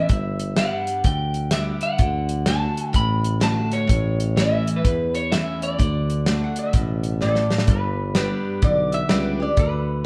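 Honky-tonk and classic country at 126 BPM in 4/4 with a swung eighth-note feel, this short cut from a longer piece has a sunny, easygoing mood. A bright, twangy electric guitar through a small old amp carries the melody with a slightly broken-up edge and tape echo, over a full-bodied picked dreadnought acoustic guitar and a mellow tuba bass with soft attack and vibrato. A natural country drum kit with a medium-tuned snare, tight kick and hi-hat sits up front, and the chords move from G through D and A before returning to G at 7.7 seconds. The lap resonator guitar joins at 6.3 seconds with a metallic, nasal tone from fingerpicks and slide, then takes a steel-bar solo from 7.7 seconds after a short drum fill. A boxy baby grand piano adds very quiet accompaniment near the close, and moderate plate reverb places the whole band a little further back in the room.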